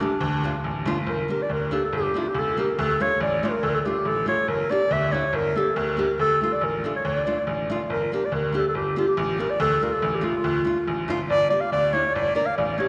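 Steeped in a wet church reverb with the top end rolled off above 10.5 kHz, this bittersweet, soulful klezmer fragment at 141 BPM in 2/4 sets an up-front, mellow clarinet singing a classical-style solo melody over fingerpicked nylon-string guitar with fresh strings and a brilliant grand piano carrying the bass line with audible action noise and long sustain, all swaying between Dm and Gm.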